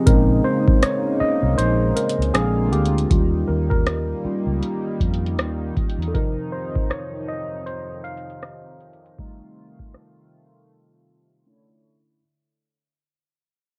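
A slow 79 BPM groove in 4/4 with a swung sixteenth-note feel anchors this late-night, longing contemporary R&B excerpt in F minor, cut from a longer piece. An up-front analog drum machine supplies a deep, booming kick, metallic hi-hats and rim clicks through 10.1 s, while a dark, round, foam-muted electric bass sits low and amped until 6.1 s. A worn, slightly out-of-tune tine electric piano, lightly overdriven through a combo amp, takes the solo role across the clip, and a shimmering, retro pulse-width pad holds soft-attack chords with chorus and sidechain pumping underneath. The harmony moves from Bbm11 through Bb7 and Eb7 to F7sus4 and F7, landing on Aadd11/D, as a filter sweep and fade-out run throughout and a break opens at 10.7 s. Light reverb and the hazy, low-passed character of a home cassette recording give the whole thing an intimate, faded feel.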